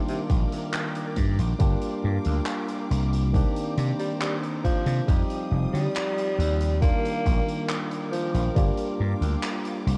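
A straight 4/4 groove from a thumpy, sampler-style electronic kick and a big-room rock kit with handclaps and hi-hat, both coated in vintage 12-bit grit, sits under a punchy, tube-saturated slap bass up front, while a barky tine electric piano with subtle chorus and tape echo and a lush bowed string section in the background move through Ebmaj7, Gm7, Cm9 and Fsus2, and a raspy tenor saxophone with scooped notes, 12-bit grit and tape echo carries the melody until 8.6 s in this nostalgic, woozy vaporwave excerpt with dark cassette-tape production and light reverb.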